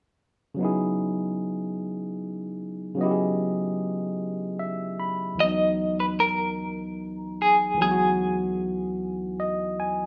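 A dark, clean semi-hollow electric guitar, picked and up front with tremolo and slapback echo, carries the yearning melody from 5.4 s in this late-night R&B excerpt at 50 BPM in 6/8 and C# dorian, over a barky tine electric piano through a combo amp that accompanies from 0.5 s, opens on a C#m11 chord and adds brief fills, within a moderate echo-chamber reverb and small-room ambience.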